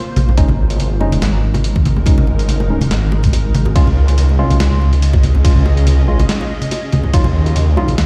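A blurred, evolving granular cloud pad opens this cavernous, meditative deep dubstep excerpt at 142 BPM in a swung half-time feel, soon joined by an up-front, rumbling and saturated detuned saw bass, a muffled, pitched-down sampler-style trip hop kit of hi-hat, ride and snare, bright, dry congas and bongos in the background, a knocking layered electronic kick, and worn, slightly out-of-tune electric piano stabs carrying 12-bit grit and dub echo over chords moving from Absus4 to Db to Ebmadd9, all set in a large, reverberant room sound.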